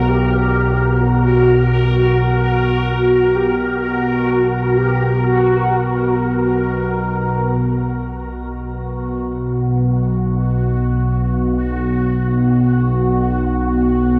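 This dark ambient drone piece, cut from a longer work, opens at once on a sustained analog drone spanning B1 to B2, a mellow horn-like synth lead, and a bubbling stepped-filter texture, all resting on an F#add11/B chord in free time. The drone sits up front, a warm, evolving blend of sawtooth, pulse and triangle waves with pulse-width modulation, ring modulation and chorus, its slow attack and long release giving the piece its cavernous weight. Above it, the round, warbling lead hovers between F#4 and G4 with vibrato and a filter sweep, dressed in ensemble chorus, shimmer reverb and tape echo, and it falls silent at 6.6 seconds. The quieter texture, built from detuned, resonant sawtooth tones with random filter steps, chorus and shimmer reverb, gently fades in from 7.6 seconds and carries on alongside the drone until the close at 14.2 seconds. A huge, wet ambient reverb with a nine-second tail wraps the whole recording, leaving a desolate, endlessly suspended atmosphere.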